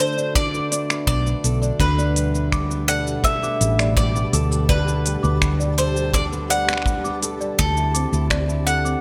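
A bright, picked bowl-back mandolin carries the melody up front from the first second, its double strings trailing a tape echo, while a fingerpicked flamenco guitar with fresh strings spins arpeggios through its own tape echo. This is a playful, delicate folktronica fragment at 83 BPM in a straight 4/4, moving from D6 to Gadd9 and settling on Am7/D near 7.6 seconds. A slightly out-of-tune celesta with soft felt hammers adds a sweet, bell-like second line through digital delay, and a warbling, nostalgic lo-fi pad with a slow attack holds detuned chords in the background, thickened by chorus and its own reverb. Underneath, a round, dark hollow-body electric bass sits up front, and an organic electronic kit ticks along with cabasa, finger snaps and smooth hats, joined at 0.4 seconds by a punchy, polished acoustic kick with an airy stone-room sheen. From 2.6 seconds a very quiet, flickering granular texture glints faintly in the background, while the overall sound stays close and dry, cut from a longer piece.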